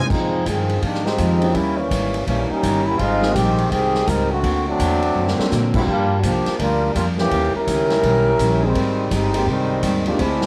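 A tight, vibrato-laden trombone section carries the lead through this dramatic, brassy big band swing excerpt, its jazz-style tone up front yet roomy. Beneath it, a thumpy, woody pizzicato upright bass and a swinging drum kit with a punchy kick and medium-tuned snare keep the pulse, the drums breaking into a short fill at 5.2 seconds. An intimate concert grand with audible action noise and a bright, picked dreadnought guitar with finger squeak sit in the background over chords moving from Fm7 through Eb7b9 to Abmaj7, all under moderate spring reverb and a homemade cassette character.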